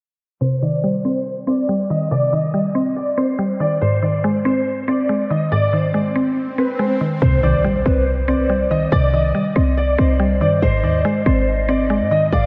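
A half-time 4/4 hip hop groove at 141 BPM in C minor moves between Cmadd9 and Ab with a menacing, dreamy mood, as a dark grand piano melody, intimate with audible action noise, and a woody, round, FM mallet-like synth pluck play together from 0.4 seconds under a filter sweep. An electronic swell rises from 6.1 seconds into an impact. At 7.2 seconds a punchy, tight short 808-style bass and a hollow, warbling clarinet-like synth lead with vibrato and analog delay join, all set in a lush hall reverb in this excerpt from a longer piece.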